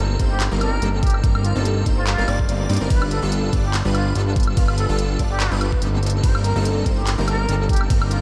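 A breathy, plunger-muted trumpet plays a distant, intimate jazz-style melody through this lush, emotional future bass excerpt at 144 BPM in a half-time swung feel, over punchy detuned supersaw stabs, a fat sawtooth analog bass, soft sine-based lead arpeggios with chorus and vibrato, an overdriven knocking electronic kick up front, and a trap kit of crisp hi-hats, handclaps, ride cymbal and woodblock, with the trumpet, stabs, lead and bass all pumping from sidechain while the whole dreamy mix is soaked in cathedral reverb over Cm7/G and G7 chords.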